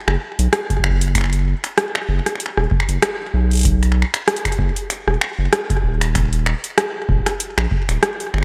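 A round, dark analog bass and an electro analog drum machine open this short IDM fragment at 0.1 s, the bass sitting low between D#1 and B1 with a fast attack and sustained, sine-like tone. The drum machine's finger snaps, metallic hi-hats and rim clicks sit up front, carrying a delay and a tape-warm, small-room character. At 0.7 s an electronic kick drum with a deep analog thump joins, playing until 7.9 s. The groove moves at 96 BPM in 4/4 with a light 56% swing on the 16ths, giving the cerebral, intricate mood a slightly loose gait. Light reverb and a bright 1980s-style digital sheen frame the whole passage, which stays in a single section and is cut from a longer piece.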